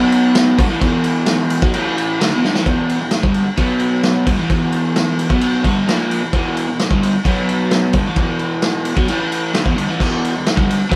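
The crunchy overdriven electric guitar leads this gritty, menacing garage rock excerpt, a bright, double-tracked picked riff sitting up front in E minor and moving through power chords on B, E and A before settling on E minor. A vintage acoustic drum kit joins at 0.1 seconds, pushing a straight 4/4 at 131 BPM with a tight kick, medium-tuned snare, and dark crash and ride cymbals. The drums sound saturated and mid-forward with a rolled-off top, placed up front beside the guitar. A drum fill at 2.4 seconds marks the shift into a new section at 2.7 seconds, where the riff cycles again through the same chords. The band sounds like it is playing live in one stone room, whose moderate reverb gives the pair a raw, enclosed ring. The clip is cut from a longer piece and runs to 11.0 seconds.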